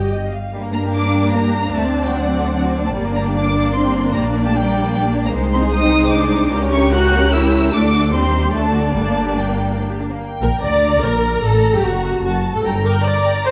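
A dark, warm string-orchestra sound fills a scoring stage with moderate reverb in this short cut from a quick, dramatic classical-period movement in triple time, played with an urgent, rubato feel. The first violins carry the melody high in their range with a dark, smooth-topped tone, using vibrato and portamento that make the line expressive. The second violins add a rich counter-line across a broad span, while the violas fill in the accompaniment with a close, warm sound and their own sliding vibrato. Beneath them, the cellos hold a rich, even bass in the background, and the double basses sit up front with a focused, smooth-topped weight. Both low sections stop at 13.0 seconds, just before the upper strings finish, after a harmonic path that leans on a diminished chord and ends back on the home minor chord.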